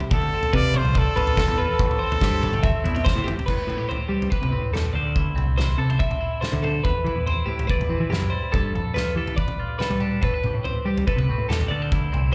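Intricate and wistful, this math rock and midwest emo piece at 142 BPM in A minor opens with a bright, close-miked trumpet melody with light vibrato until 3.0 s, while a clean, compressed twelve-string electric guitar picks arpeggios through analog delay, a twangy electric guitar adds accompaniment with slapback echo, a growling overdriven electric bass sits up front, and a loose indie drum kit with dark cymbals and a tight kick plays a fill at 3.1 s leading into a longer section of extended chords such as Am9 and G9, the whole mix heard as a live gig through a club PA with a dulled top end.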